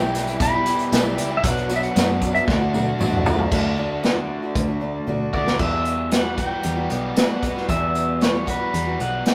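A rough rehearsal-room recording bathed in wet studio reverb carries this warm, nostalgic slice of folk and heartland rock at 115 BPM in straight 4/4, where a clean, compressed pedal steel guitar sings the melody with fingerpicks, slide and volume swells over a fresh-stringed parlour acoustic guitar, a double-tracked overdriven electric guitar riff, punchy foam-muted fingered bass and an up-front, roomy acoustic drum kit played with bundle sticks, dark cymbals and fills at 2.5 and 5.1 seconds, while a very quiet, flute-like tonewheel organ with slow rotary vibrato and a jingly tambourine drop out by 3.5 seconds as the chords move from Em through Bm and D to Emadd9.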